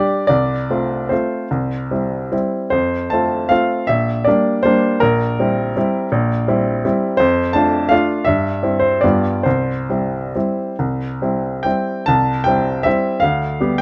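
In a rubato triple metre, a bright, woody upright piano plays alone and up front through this playful, graceful classical waltz, its polished, short-sustained tone ranging from Bb1 to A5 with light reverb in a dark production, moving through chords such as F/C, Gm/Bb and C7/Bb before settling on C at 9.4 seconds, then turning to a brief new section at 12.1 seconds before the cut.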